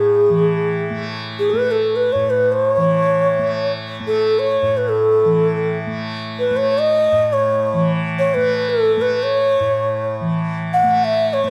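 A mellow, airy, slightly unsteady bansuri with a crisp, chiffy attack and vibrato floats up front over a shimmering, buzzing tanpura drone in this serene, radiant fragment of a free-time Hindustani raga Yaman in A, set in a moderate recital-hall reverb with a dark production.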